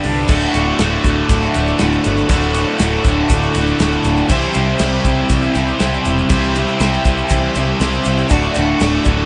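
This classic rock recording sits in a small room whose highs stop short of 10.3 kHz, cut from a longer piece. It moves in a confident, driving straight 4/4 at 120 BPM in D mixolydian. Up front, two picked electric guitars each play a riff: one bright and distorted, the other overdriven and run through a phaser. Beneath them, a punchy, foam-muted electric bass is heard both direct and through an amp, while a dry 70s drum kit with dark cymbals, a medium-tuned snare and a tight kick sits further back, its top end rolled off. A picked steel-string acoustic guitar with fresh strings and finger squeak adds background accompaniment, an egg shaker adds close, grainy percussion, and a very quiet, shouting tonewheel organ holds sustained chords, lightly overdriven, with key click, chorus vibrato and a slow rotary speaker. The harmony rests on D, shifts to C at 4.3 seconds and returns to D at 8.3 seconds.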